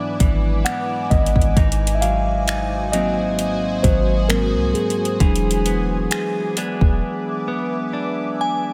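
A slow, lightly swung 66 BPM groove in 4/4 of finger snaps, metallic hi-hat and soft kick from a smooth R&B drum kit, joined by a deep, round 808-style bass from 0.2 to 7.0 seconds, carries this longing, sensual contemporary R&B excerpt, where a mellow tine electric piano takes the lead over chords moving from E7/G# to G#7 and E7, framed by picked arpeggios on a clean, direct electric guitar with spring reverb and digital delay and a blurred, warbling granular pad with built-in reverb and sidechain pumping, before a break lets a glassy, crystalline synth bell with chorus sound a single G#5 at 8.4 seconds in a dry, close mix.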